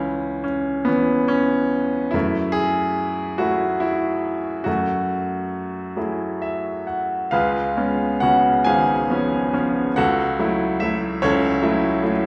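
A bright grand piano sits up front in a wet recital hall, its long sustain and audible action noise giving this short cut from a longer piece an intimate feel. It is lyrical classical solo piano in F# minor, set in a slow 6/8 at 46 BPM with uneven, rubato beats that lend a wistful, reflective mood. The harmony moves from C#m7 through F#m7 before a brilliant piano fill at 6.0 seconds leads into a new section at 7.3 seconds, where a C#7 chord gives way to F#m7/C#.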